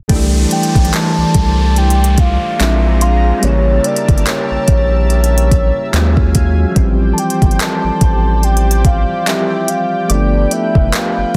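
A dense, heavily limited modern mix with digital ambience carries this smooth, tender contemporary R&B excerpt with a swung 16th-note feel, where an electronic drum kit of soft kick, crisp hi-hat and handclaps sits up front beside a deep, round analog bass, mellow electric-piano-like synth keys with chorus and tremolo ride over a lush, warbling detuned pad, a dark octave-layered synth lead carries the melody through chorus and tape echo from 0.5 s, a gentle pluck with tape echo sits in the background, and an electronic downlifter runs until 6.8 s.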